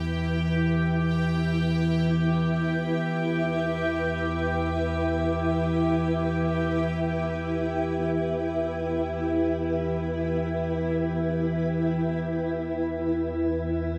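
A huge, wet reverb with a long tail surrounds this ominous, unsettling ambient fragment in E minor, cut from a longer piece and drifting in free time over a single E minor chord. Up front, a deep, wave-folded drone rumbles darkly in the low register, fading in slowly and sustaining with a long release. Beside it, a granular cloud pad holds sustained chords higher up, its detuned unison voices blurred and evolving as a moving notch shifts through the sound, with shimmer reverb adding a glistening halo. A bright, resonant sawtooth texture bubbles quietly in the background through random filter steps, thickened by chorus and shimmer. That texture stops at 12.0 s, leaving the drone and pad alone until the close at 14.0 s.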